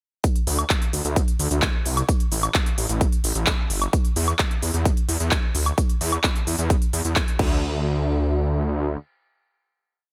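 A punchy, overdriven four-on-the-floor electronic kick and a crisp, tape-toned big-room kit of hi-hats, handclaps, cabasa, woodblock and crash burst in at 0.2 seconds to open this emotional, powerful festival progressive house drop at 130 BPM, joined at 0.5 seconds by a thick, lush detuned saw bass with chorus and sidechain pumping that plays off-beat, all up front in a dry mix, until the drums stop at 7.5 seconds and the saturated bass sustains alone as a final hit until 9.0 seconds.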